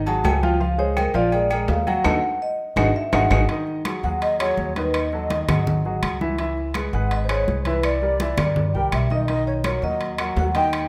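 This sultry, sophisticated Afro-Cuban jazz excerpt sits in a moderate large studio reverb, with a woody pizzicato upright bass and a natural grand piano up front at 166 BPM in a straight 4/4, settling into G# minor from 3.5 s. A mellow, airy vibraphone played with soft mallets and a slow motor vibrato carries the melody and takes a solo in the opening seconds, while ringing metal-shell agogo bells and timbales, high-tuned congas under soft hands, and distant claves fill out the percussion, closing that opening with a drum fill and band accent from 2.1 s. At 4.0 s a breathy bamboo shakuhachi with rolled-off highs and expressive vibrato enters in the background as a second line, moving over chords such as C#m7, C9 and Bmaj7.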